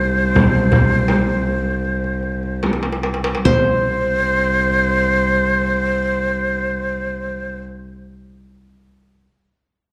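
A dark production in a wet recital hall frames this hypnotic, longing Arabic maqam ensemble passage in 4/4 at 71-84 BPM, easing to a slower pace over the first 3.4 seconds. A plectrum-plucked qanun with triple strings carries the melody with a slapback echo, while an up-front, breathy ney with vibrato and a reedy edge weaves a second line above a close, woody bowed cello drone. A crisp, saturated metal-shell darbuka and a deep, distant frame drum (joining at 0.4 s) drive the rhythm into a drum fill before both fall away at 3.8 s.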